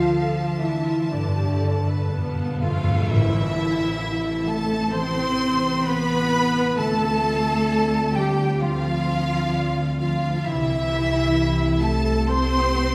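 Heard from further back in a wet scoring-stage reverb, this excerpt from a longer cinematic film score moves at a rubato 65 BPM in 4/4, hopeful and tender, and settles into A minor at 3.1 s. A focused violin section carries the melody over an airy, hollow flute and a very quiet, lush second violin line, with a bowed viola section, punchy French horn chords, a ringing fingerpicked harp and smooth cellos beneath. Double basses join at 1.1 s alongside a timpani fill on calf heads, a clear solo clarinet enters at 2.6 s, and a dark tam-tam adds colour during the band accent at 3.1 s.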